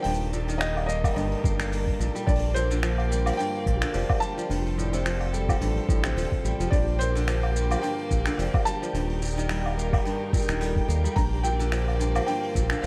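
Delicate and hopeful, this folktronica excerpt pairs a felt-muted upright piano melody with a soft-mallet vibraphone second line and crisp, fingerpicked kora arpeggios, both piano and kora touched with digital delay, while a bright string quartet holds sustained chords under 12-bit sampler grit, a flickering granular texture shimmers in the background, a brushed jazz kit with finger snaps, shaker and woodblock sits beside a muffled, thumpy electronic kick that enters at 1.0 seconds, and a round, deep analog bass with tube saturation anchors everything up front in a small, lightly reverberant room.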